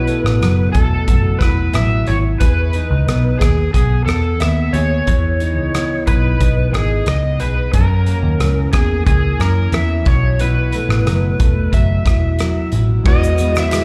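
A straight 4/4 pulse at 90 BPM drives this laid-back, hazy indie and bedroom pop cut in E major, with a loose drum kit of punchy kick, rim click, shaker, hi-hat and dark crash cymbals in a pumping room sitting up front beside a round, foam-muted electric bass. A full-bodied fingerpicked acoustic guitar drifts in pitch under lush chorus and slapback echo, while an overdriven slide guitar carries the melody with subtle chorus and delay over chords moving from B7sus4 through Emaj7 and F#7 before settling on Eadd9. In the closing moments, mellow lo-fi synth keys warble in at 13.0 seconds, a bright granular cloud pad joins at 13.6 seconds and very quiet crisp handclaps follow at 13.7 seconds, the whole performance heard through a venue's PA with club reverb.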